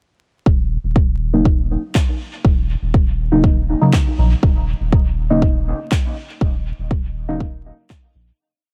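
A straight four-on-the-floor electronic kick at 121 BPM drives this nocturnal, hypnotic dub techno piece in Eb minor alongside a round, sine-toned sub bass that pumps with sidechain, and from 1.9 s faint handclaps carrying dub echo join in. Sparse, dark chord stabs built on Ebm7 ride over the groove, one shape moved in parallel, their soft, decaying tone shaded by chorus, phaser, a filter sweep and echoing delay. The dry mix sits under a layer of vinyl crackle, and the piece fades out from 5.8 s.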